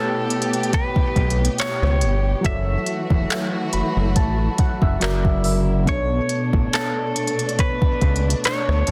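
A fat, saturated analog bass sits up front from 1.2 seconds, anchoring this moody, late-night contemporary R&B excerpt at a slow 70 BPM in B minor, as a smooth electronic kit of soft kick, hi-hat, rim click and handclaps carries a lightly swung groove. A brilliant, twangy clean electric guitar carries the melody over round electric-piano-like synth keys treated with chorus and phaser, which add a fill from 3.3 to 5.9 seconds, while a bowed string section holds sustained chords with expressive vibrato. A very quiet, crystalline wavetable pluck adds texture from 3.3 seconds, all within a digital ambience and a dense, heavily limited modern master, moving through chords from A9 to Bm9.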